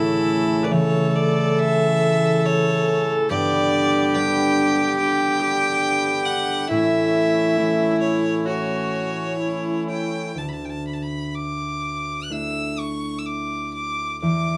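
A rich, focused fiddle carries the melody up front with light vibrato in this wistful, pastoral Celtic slow air, cut from a longer piece and moving freely in rubato 4/4 at around 61-71 BPM, tuned to A4 = 441 Hz. An earthy viola with an airy bow sings a second line, also up front, while a fingerpicked concert harp rings out underneath and a reedy, breathing pedal harmonium holds dark, smooth chords moving from A to G and back to A. At 10.3 s the viola and harmonium stop, leaving fiddle and harp to settle onto a Dsus2 chord in light reverb.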